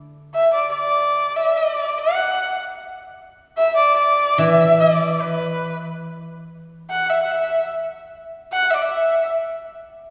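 A dark, woody erhu carries the melody from 0.3 seconds to 9.3 seconds, a single bowed voice sitting up front with vibrato and portamento colouring its line between B4 and F#5. Around it, a bright, silvery guzheng played with fingerpicks supplies ringing accompaniment, heard briefly at the opening and again from 4.4 to 6.9 seconds, spanning D3 to A4. This is Chinese traditional music in a D gong mode, moving at 74 BPM in 2/4 but with a free, rubato feel that lets the phrases breathe. The mood is festive yet pastoral, cut from a longer piece. A lush concert hall reverb with a long tail places the listener further back in the room, giving the two instruments a spacious, airy setting.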